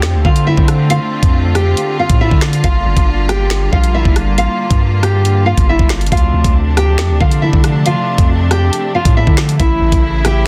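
Menacing, dark drill hip hop at 138 BPM in a half-time D minor feel, cut from a longer piece, where a fingerpicked nylon-string guitar with a full-bodied classical tone, low-pass filtered and dressed in tape echo, carries the melody over veiled, muted bowed strings holding sustained chords with light vibrato, a deep sine-like 808 bass with a fast attack and long decay, and an up-front electronic drill kit of knocking kick, woody soft-clipped snare, bright hi-hats, rim clicks and finger snaps, all cycling through Dm7 and Gm7 before landing on A near 9.6 seconds in a dense, heavily limited modern mix with digital ambience.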